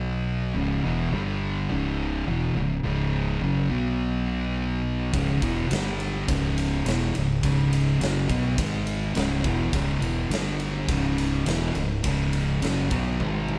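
Sludgy and hypnotic, this stoner and doom metal excerpt rolls along at 105 BPM in a straight 4/4, cut from a longer piece. Two thick fuzz guitars sit up front and carry the riff together from the start, one with a warm, distorted tone and the other darker, both picked and drenched in fuzz as the harmony circles around C#m with B5, G5 and G#5 chords. Beneath them, a growling fingered electric bass, heard both direct and through an amp, adds an overdriven, punchy low end deep in its register. The big rock drum kit enters at 5.1 seconds with a punchy kick, a medium-tuned snare, ride cymbal and toms, and closes the passage with a fill from 13.2 seconds. The band plays live in one room, and a moderate stone-room reverb gives the drums a bright, hard-walled ambience.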